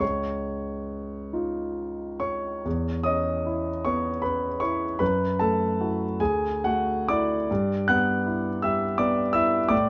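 The rhythm flows in a slow, rubato 6/8, its dotted-quarter pulse drifting between 44 and 56 BPM with an unhurried, breathing give. This hazy, serene impressionist solo piano piece is cut from a longer work and played on a concert grand that spans from Db2 up to F#6. The instrument sits intimate and up front, its tone clear and polished with deep bass and a long sustain, and the sound of the action is audible beneath the notes. Harmonies glide through colorful chords, opening on Dbadd9 before a new section begins at 2.7 seconds on E5, then moving through F#m7 and Dadd9 to settle on G6 at 7.5 seconds. Light reverb and a dark, warm production wrap the whole piano in a hazy glow.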